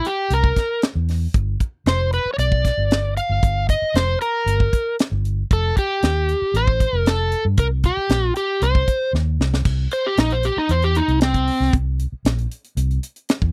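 A dry, close recording in a 1970s studio style frames this rollicking, gritty slice of straight-eighth soul blues at 116 BPM, cut from a longer piece and moving over chords such as C7, F7 and Cm. A tight funk drum kit with a high-tuned snare and tight kick sounds natural and up front, while a dark, round, foam-muted fingered electric bass joins at 0.3 s. An overdriven slide guitar carries the melody with a warm, overdriven edge, and a drum fill at 9.1 s leads into its solo at 9.7 s.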